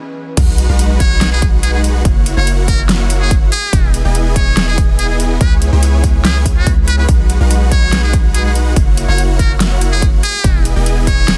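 Emotional and bittersweet, this future bass passage, cut from a longer piece, hits its drop at 0.4 seconds in a half-time feel. Huge, lush supersaw chords, bright and detuned, cycle through B6, F#7, Emaj7 and C#m7, pumping against the beat alongside a deep, mellow sine 808 bass that sits up front with long, decaying notes. A punchy, overdriven electronic kick anchors the groove, while a layered big-room kit adds a huge snare, metallic hats and crash cymbal, all with grit and filtered lows. A very quiet sub drop sinks beneath the opening impact until 2.1 seconds. From 1.0 seconds a close-miked trumpet with a metal mute carries the solo melody, its buzzy, thin tone marked by light vibrato, scooped notes and tape echo. The mix is dry, dense and heavily limited in a modern style.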